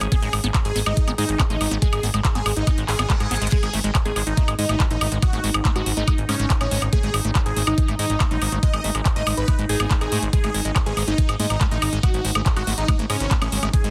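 A hypnotic psychedelic trance excerpt opens with a morphing wavetable pad pumping in the background, a punchy, funky analog bass up front and a drum-and-bass kit of metallic hats, handclaps, woodblock and crash, joined at once by a knocking, tape-warm kick, a huge detuned supersaw melody with phaser and dub echo, and a squelchy acid bass riff, while a reverse cymbal at 2.8 seconds and a drum fill at 3.3 seconds mark the opening bars and a nasal, very quiet wobble bass surfaces from 4.1 seconds, all in a dense, heavily limited modern master.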